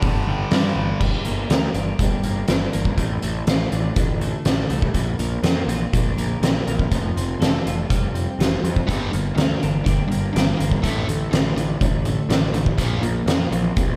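A fat-snared, punchy, up-front low-tuned drum kit drives this brooding, angsty quiet-loud alternative rock excerpt in G minor at 122 BPM, joined by growly fuzz bass, a twangy, chorus-lushed twelve-string electric guitar playing arpeggios in the background, a tight distorted guitar riff with slapback echo only in the opening second, and a cranked stack guitar riff entering at 8.9 seconds, over a progression moving from Gm through Dm/A, Bbadd9 and Fadd9.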